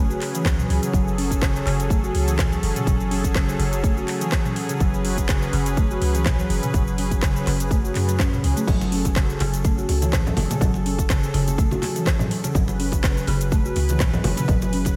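Lightly reverberant and spiritual, this afro house excerpt rests on a smooth, detuned analog pad holding sustained chords with chorus and sidechain pumping, while a woody, buzzing marimba with soft mallets spins airy arpeggios through a diffuse ambient delay, a deep, boomy 808-style bass anchors the low end, a punchy layered electronic kick and an afro-pop kit with metallic hats, handclaps, rim clicks, shaker, toms and crash drive the swung groove, and low-tuned, thick-skinned congas join in the background at 8.7 seconds.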